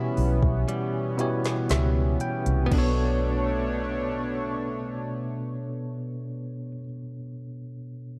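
A bell-like tine electric piano sits up front in this short, sensual late-night contemporary R&B excerpt in B minor at a slow 59 BPM in straight 4/4, playing over a shimmering, retro pulse-width pad with chorus and sidechain pumping, a dark, round, foam-muted fingered bass, and a bright, scooped clean electric guitar playing arpeggios with tape echo in the background. A smooth electronic drum kit with a soft kick, woody snare, smooth hats and crash cymbal enters at 0.2 seconds, though the kick soon drops out, and the electric piano then plays a fill. The harmony moves from C#m7b5 over B to Bm9 at 2.7 seconds, marking the start of the second section. The drums stop at 3.0 seconds, leaving the electric piano, pad, guitar and bass to carry the sustained Bm9. Light reverb and a dark, warm production give the whole a hushed, intimate glow.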